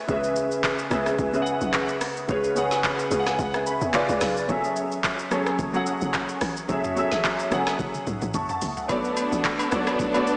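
A warm concert grand piano with chorus-thickened, deep-bottomed chords comps through this deep, late-night amapiano cut at 109 BPM with a lightly swung 16th feel, riding over a hollow, bouncy log drum bass and an up-front electronic R&B kit of knocking kick, woody snare, metallic hats, claps, rim clicks, shaker and toms dusted with vintage 12-bit sampler grit, moving from C#m7 through C#7b9 to F#m7 before a drum fill at 7.8 seconds ushers in agogo bells and a lush, vibrato-laden string section pumping against the sidechain on Bm7 at 8.9 seconds, the whole mix soaked in a dreamy hall reverb with a small-speaker sound.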